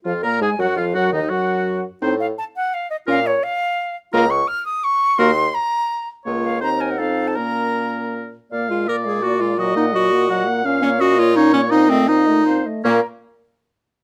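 A clear, close-miked clarinet sits up front in the accompaniment of this restless, stormy passage from a quick classical-period wind quintet movement in Bb minor and 3/4 at 149-173 BPM, played with rubato, while an airy silver flute with vibrato and tongued notes carries the melody up to F6, a warm oboe with soft attack traces a second line, and a mellow French horn and bassoon fill the middle and bass, all captured in a dry, detailed room until the chords fall away at 12.8 seconds.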